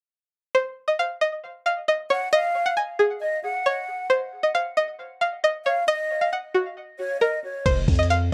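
Set at 135 BPM in 4/4 with a half-time feel, this dark, eerie trap-flavored hip hop fragment is cut from a longer piece and holds off its beat until the very end. From 0.5 seconds a twangy, string-like resonator pluck carries the melody over an open, chordless stretch, its full-bodied sawtooth tone with a noise layer, filter sweep and fast, decaying attack thickened by chorus and tape echo. At 2.1 seconds a breathy, hollow jazz flute joins with a second line, metallic and softly attacked with vibrato and lifted highs, trailing its own tape echo up front in the mix. At 7.7 seconds the harmony lands on a rootless Ebsus2/F as a deep, sine-like 808-style bass and a dusty soul sampler-style drum kit arrive together. The kit is gritty and compressed, with a thumpy kick, hi-hat and crash re-recorded in a large room, while the bass hits fast and decays long. The whole sits in a small, wet room ambience with a dark, warm production.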